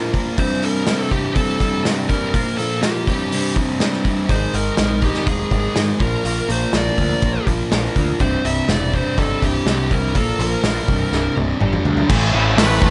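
Quiet-loud alternative rock at 123 BPM in C mixolydian, bittersweet and cathartic, opens with a thick, up-front fuzz riff, a loose acoustic indie kit with dark cymbals and a punchy kick, a dark high-gain lead melody and twangy, chorused twelve-string arpeggios tucked behind, while a growling overdriven picked bass joins at 4.3 seconds, a drum fill arrives at 11.1 seconds, and at 12.1 seconds a tight distorted guitar riff and a very quiet, gritty rotary tonewheel organ with key click enter as the twelve-string stops, all in a small, moderately reverberant room.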